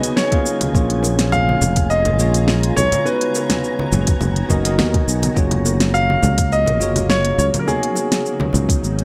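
A clear, intimate grand piano carries the melody up front in this sunny, smooth sunset chillout excerpt, its natural tone flecked with audible action noise, vintage 12-bit sampler grit and a delay. Beneath it, a bell-like tine electric piano adds clean, direct accompaniment through a tape echo, while a shimmering, ethereal pad holds sustained chords in the background with chorus, an octave-up shimmer and evolving granular detail. An airy, breathy tuned noise layer drifts in the distance like wind until it stops at 5.4 seconds. The rhythm sits on a lightly swung groove from a produced R&B kit with a fat snare, smooth hi-hats, shaker and congas, joined by a soft, tape-toned electronic kick and bright, compressed congas and bongos played with soft hands in the background. A growly, punchy fretless electric bass enters at 0.7 seconds and sits up front, as the chords move through A#m7, Bmaj7, F#maj7 and C#9sus4 under a light digital ambience.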